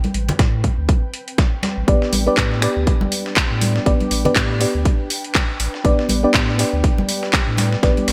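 Moody and late-night, this brief deep house excerpt at 121 BPM swings over Am9 moving to G, with a gritty, sampler-style soul kit of hats and fat snare, bright hard-hand congas and an ethereal detuned pad in the background all present from the start, a round sine sub bass pumping underneath, a punchy, tape-warm electronic kick up front from 0.4 s, a soft, dark FM electric piano stabbing through chorus, phaser and digital delay from 1.9 s, and a house kit of snaps, claps and hi-hat with gated reverb joining at 2.1 s, all under bright 1980s-style digital production.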